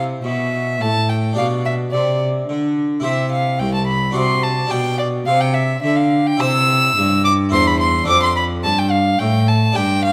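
A bowed violin, a harpsichord and a cello begin together in this flowing, dance-like baroque-style sonata movement in triple time, heard as a short section cut from a longer piece. The violin carries the melody high in its range with a rich, reedy gut-string tone in period style, sitting close and up front. Beneath it, the cello holds the bass line with a dark, smooth-topped sound, also bowed and up front, while the Italian-style harpsichord fills in the continuo accompaniment with a brilliant, full, plucked sound from its three sets of strings. The harmony moves through C, G/B, D7/C and C/E before settling on Dm7/F near 8.1 seconds, and the rubato phrasing gives the dance a supple, breathing pulse. A moderate recital-hall reverb surrounds the trio, and all three play through to the cut at 10.1 seconds.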